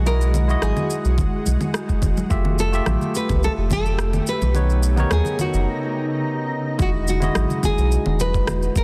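A round, deep sine sub bass with tube saturation sits up front in this blissful sunset chillout excerpt at 107 BPM in 4/4, under a fingerpicked nylon-string guitar melody and a barky, clean tine electric piano, both carrying digital delay, while a shimmering, ethereal, granular pad with chorus and reverb drifts in the background through Emaj9, Fmaj9 and Bmaj9, an overdriven electronic layer of shaker, congas and rim click enters at 0.1 s, close, dry hard-hand congas join at 0.6 s, a gritty, thumpy, tape-warm sampled kick arrives at 1.2 s, and a short break precedes the return to Emaj9 in a dense, heavily limited mix.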